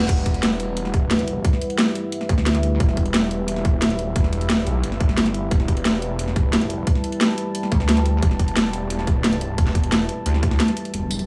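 A snarling, detuned saw bass growls up front through this tense, mechanical dark drum and bass excerpt, driven by a tight overdriven kick and a cracking kit with bright hats and tambourine, while a pulsing sine wobble bass flickers at the very start and surfaces again at 2.3 and 7.7 seconds, a deep, mellow pad pumps beneath on a sustained E minor chord, and a reverse cymbal and impact frame the clip in a dreamy, reverb-soaked small room.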